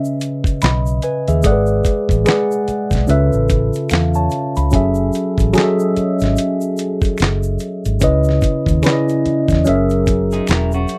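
A dry, close recording with the intimate feel of a 1970s studio opens this short, introspective neo-soul R&B passage, cut from a longer piece and moving at a relaxed 73 BPM in 4/4 with a swung sixteenth-note feel in C# minor. A worn, slightly out-of-tune tine electric piano sits up front, its clean, direct tone coloured by a phaser as it carries the chords from C#m9 through G#m7b5, C#7alt and F#m7 to C#m7 and F#7. A dusty, sampler-style drum kit enters at 0.2 seconds, gritty and compressed, with a thumpy kick, a fat snare, hi-hat and handclaps that sound re-recorded in a small room, while an egg shaker, finger snaps and a group handclap stay quietly in the background. A vintage foam-muted fingered electric bass joins at 0.6 seconds, dark, round and amped, holding the low end. Near the close, at 10.3 seconds, a bright, twangy electric guitar through a small old amp slips in with a picked, slightly broken-up second line, adding a smooth final touch.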